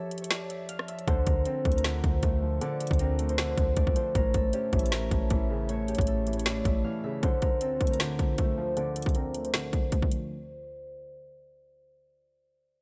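A half-time trap beat at 156 BPM in D minor, built from an up-front electronic kit of hard-clipped kick, woody snare, rim click and metallic hats, drives this eerie, dark hip hop fragment, where a ringing, fingerpicked Celtic harp carries the melody through a low-pass filter and tape echo over a detuned, chorused analog pad in the background, mellow, boxy grand piano accompaniment and a deep, boomy sine 808 bass that stops at 6.8 seconds before a filter sweep runs from 7.2 seconds in a dry mix.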